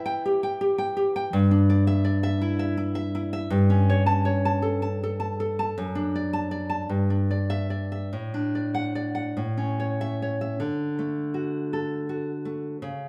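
A large studio's wet reverb, about 1.2 s long, surrounds this short, live-in-the-room cut from a longer romantic piece for solo classical guitar. The nylon-string guitar sits up front, fingerpicked with a warm acoustic tone. It moves in a rubato 6/8 at roughly 47-57 dotted-quarter beats per minute in D major, in a nostalgic mood. The harmony drifts from Em through A7/G, D/F# and D/A to an A chord, then opens into a new section that settles on D at 10.6 seconds.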